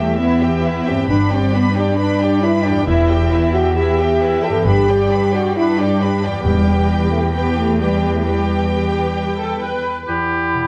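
A mellow French horn section holds sustained chords in this cinematic orchestral cue in E minor, which moves at 134 BPM in a straight 4/4 with an adventurous, determined mood. Above it, a lush violin section carries the melody with smooth vibrato. A darker, woody second violin line sits distant in the background, and a focused viola section plays the accompaniment close by. An intense chamber cello section anchors the bass up front, joined from 1.1 seconds by a rich double bass section, while a very quiet fingerpicked concert harp rings through arpeggios over harmony that alternates between E minor and G. Hard-mallet timpani strike briefly at 6.5 seconds, and at 10.1 seconds a clear clarinet, an oboe and a hollow flute add a short woodwind line, the whole passage heard in a moderate scoring-stage reverb as a cut from a longer piece.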